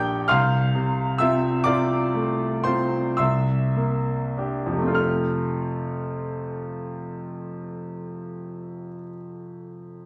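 Classical romantic nocturne for solo piano in a dreamy, nostalgic mood, flowing in a rubato 9/8 that slows through the first 5.0 seconds, with a brilliant, open grand piano of long sustain sitting up front across a range from Bb1 to G6 inside a wet recital-hall reverb and a dark, warm production, cut from a longer piece.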